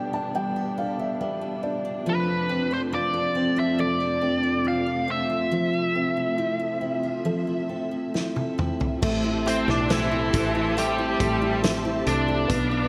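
Heartbroken and longing, this slow pop ballad at 70 BPM in A minor opens with a woody upright piano fill over dark, bowed strings with vibrato and a full-bodied picked acoustic guitar, finger squeak and all, tucked in the background. A biting, overdriven lead guitar takes the melody up front from 2.1 s. A gritty, punchy indie drum kit with a fat snare enters at 8.2 s, and a growly, round fretless bass joins at 9.0 s as the harmony settles on Am7, all set in a lush hall reverb with bright 1980s-style digital production.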